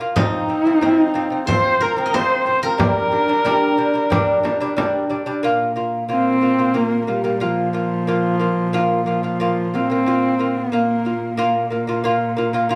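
This recording sounds like a band playing live together in one large studio, wrapped in a moderate reverb. It is a short cut from a longer Mongolian folk piece in Bb zhi mode, moving at 91 BPM in a straight 4/4 with a vast, galloping mood. A dark, husky horsehead fiddle carries the melody up front, its woody bowed tone shaped by vibrato and portamento, while a delicate, fingerpicked lute with double nylon strings plays bright arpeggios, also up front. In the opening section a silvery steel-string zither, played with fingerpicks, rings out a second line and a small frame drum adds percussion, both dropping out by 5.2 s. At 5.4 s the second section begins as a biting, nasal cello takes up an intense drone on Bb2, its airy bow and vibrato heard close. The harmony moves from F5 to G5 and then to Bb5 at that turn.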